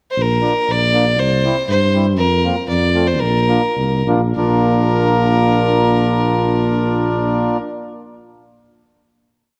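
In a straight 2/4 at 96-121 BPM, this short, jolly and festive alpine folk dance-band piece in Bb major has a dark, smooth-topped tuba playing root-and-fifth bass on the main beats, a mellow, reedy accordion playing off-beat triad chords, and a clear, nasal fiddle with light vibrato stating a motif-based melody up front, all slowing from 2.2 seconds into a final chord held from 4.4 seconds in a moderate concert hall reverb.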